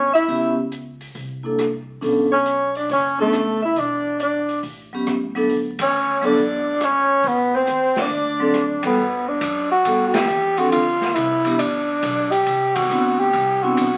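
A breathy, whispered tenor saxophone carries the melody up front in this playful small-group swing and bop jazz fragment, with a clear alto saxophone adding a second line until 8.9 s, a ringing vibraphone with slow motor vibrato comping beside it, a woody, thumpy pizzicato upright bass and an open drum kit with dark cymbals and a boomy kick. The band hits accents together at 5.7, 8.8, 10.1 and 12.7 s, while the key moves to G major at 9.0 s, all heard through the crackle of a very old 78 rpm record.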